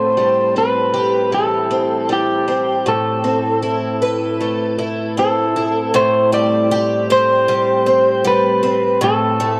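Ethereal and haunting, this short dream pop excerpt drifts at an unhurried, straight 4/4 pace, cut from a longer piece. An electric slide guitar carries the melody throughout its 9.6 seconds, its slightly broken-up, compressed tone softened by a low-pass filter and trailed by tape echo. Beneath it, a picked twelve-string acoustic guitar spins arpeggios with a boxy, archtop character, its octave-doubled strings made shimmering by analog chorus and also filtered and echoed on tape. Both guitars sit up front, bathed in a huge ambient reverb with a long 5.3-second tail that lends the dark production its spacious, dreamlike haze. The harmony hovers on minor colours, moving from Am7 to Amadd9, back to Am7 as a new section begins at 5.9 seconds, and settling on Am near the close.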